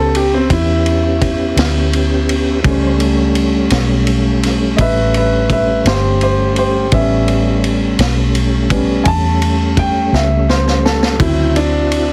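A grand piano takes the solo throughout this gritty, rollicking slow blues excerpt. Its boxy, intimate tone carries audible action noise and a long sustain. The 12/8 groove moves at 56 dotted-quarter beats per minute in A mixolydian. A smooth tonewheel organ holds sustained chords through a slow rotary speaker with chorus vibrato and a touch of key click. Beneath them sits a round, punchy, foam-muted electric bass placed up front. A saturated vintage kit with a tight kick, medium-tuned snare and dark cymbals plays throughout and adds a fill from 10.1 to 11.2 seconds, leading into the harmony's move from A9 to D9 at 11.2 seconds, all under light reverb and a heavily compressed, radio-like sound.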